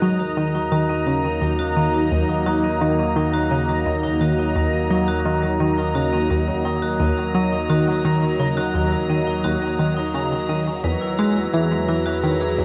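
An evolving, detuned wavetable pad with phaser, a nasal, tightly plucked sawtooth synth riff with chorus and delay, ringing hard-mallet vibraphone arpeggios with delay sitting up front, and a vintage, pulse-width-modulated analog drone in the bass all sound together from the start of this cosmic, hypnotic stretch of sequencer-driven space music. From 0.1 s a resonant, bubbling texture with random filter steps hovers high and faint, the harmony moves from Ebm to Eadd9 at 10.8 s, and a wet plate reverb and the warble of worn cassette tape give the recording a drifting, aged sheen.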